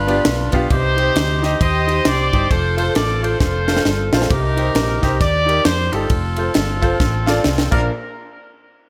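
A clear, vintage horn section with light vibrato and a touch of delay carries the melody from the first moment of this jubilant, reverent uptempo gospel excerpt in swung 4/4, joined by brilliant grand piano accompaniment, a round, dark hollow-body electric bass, and a tight, up-front funk drum kit with bright cymbals, a high-tuned snare and gated reverb that plays fills at 3.4 and 7.0 seconds, all set in a bright 1980s-style digital production with plate reverb and small room ambience.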